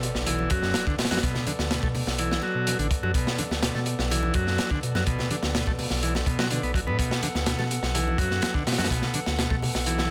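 A crunchy breakbeat drum kit sits up front in this funky, swaggering breaks clip, its tight kick, medium-tuned snare and hi-hat sounding saturated and gritty with a rolled-off top, as if caught in a studio room. Beneath it, a dark detuned saw bass rumbles with a deep, beating tone and tube-saturated weight, holding steady from the first second. A very quiet electronic sub drop marks an impact at the start and ends by 1.2 seconds. At 0.3 seconds a vintage combo organ enters with a buzzy riff, roughened by sampler grit and trailed by digital delay. A tonewheel organ holds clear, lightly overdriven chords through a stopped rotary speaker, pumping against the beat, while ringing bongos and congas add a close, dry layer of percussion far back in the mix. Light reverb glues the parts together in this short section cut from a longer piece.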